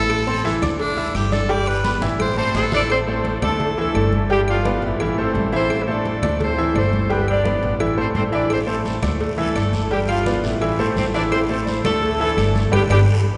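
A driving salsa groove at 171 BPM in A minor rides on woody claves, bright congas in the background, very quiet low-tuned cowbell and bongos and a raspy guiro, under a growly, dark pizzicato upright bass and a brilliant, polished baby grand piano up front. An edgy, punchy tenor saxophone solo opens this fiery passage; at 2.4 s a tight horn section with octave doubling and a smooth top takes over the melody, and the sax drops out at 2.9 s. A band accent at 12.7 s closes the cut, and the whole band sits in a long, wet cathedral reverb.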